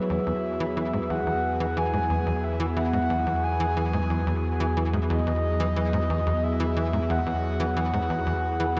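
A breathy, flute-like synth lead carries the melody up front with tape echo and shimmer reverb in this luminous, cosmic excerpt of sequencer-driven ambient space music, while a tight, punchy sequencer bass drives a nasal filter-pluck riff from 0.1 s, a swirling phased analog pad holds detuned sustained chords, a round sine sub bass sits deep on E2, and a dark, wind-like tuned noise texture hovers in the background, set in a wet spring-reverb room and an echo-heavy mix.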